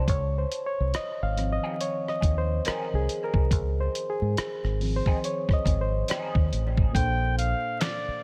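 Soulful and relaxed, this short neo-soul and R&B cut drifts along on a swung sixteenth-note feel over a dusty, echo-heavy mix flecked with vinyl crackle and light digital ambience. A bright, reedy electric piano sits up front and takes a solo through most of the passage, backed by a deep dub bass that is dark, round and punchy. The sampler-style drum kit sounds gritty and tape-warm, with a thumpy kick, fat snare, hi-hat, rim click and handclaps. From 1.6 s a slightly broken-up, lo-fi electric guitar slips in behind the others, coloured by wah, analog chorus and delay. At 7.0 s, as the harmony moves to a new chord, a mellow flugelhorn enters with light vibrato and scooped, jazz-style notes just before the fragment is cut off.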